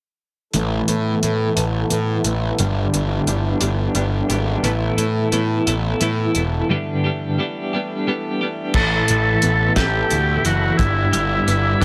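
Dark and mysterious, this psychedelic rock passage, cut from a longer piece, moves in a slow 6/8 over a steady sway between Asus2 and G. A bright, twangy twelve-string electric guitar plays the riff up front, shimmering with tremolo and a low-pass filter, and a filter sweep runs across the guitar through the opening stretch. Beneath it a fuzz-drenched picked bass growls with overdrive, while a cloth-damped drum kit thuds with a fat snare, tight kick and dark, rolled-off cymbals, and a reedy, breathing pedal harmonium drones softly in the background until about 8.8 seconds. A break arrives at 6.7 seconds, and at 8.7 seconds the music turns to a new section where a lightly overdriven tonewheel organ holds sustained chords through a slow rotary speaker and chorus vibrato, its key click audible behind the band. A buzzy vintage combo organ then steps forward with a short melody trailed by digital delay, all set in a small room with light reverb.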